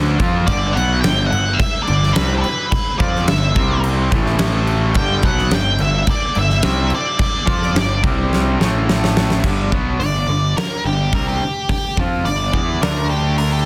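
Restless and anthemic, this quiet-loud alternative rock piece in G major moves at 107 BPM, built on a double-tracked, overdriven guitar riff, a punchy fuzz bass played up front, and a huge arena drum kit with a fat, soft-clipped snare, set in studio reverb. A dark octave-fuzz lead guitar with analog delay carries the melody from 0.5 seconds. After a drum fill, the music shifts to half time at 9.4 seconds for the lead solo, where a very quiet, twangy guitar through a small old amp adds bright arpeggios, all under a dense, heavily limited modern master.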